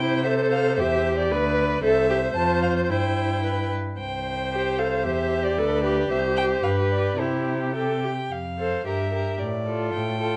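Graceful and lively, this quick classical-period movement for string quartet moves at 112 BPM in 2/4 with a rubato feel, set in C major. A dark-toned first violin carries the melody between C5 and A5, its vibrato smooth and even, while a second violin sits in a distant, expressive second line, sliding with portamento. The viola fills in the accompaniment with a warm, close sound, and an up-front cello anchors the bass from C2 to C3 with a rich, smooth-topped tone. All four players bow throughout the 10.4-second passage, which is cut from a longer piece, and the harmony circles around C before turning toward F and a diminished colour when a new section begins at 8.3 seconds. A moderate large-studio reverb gives the quartet a sense of space.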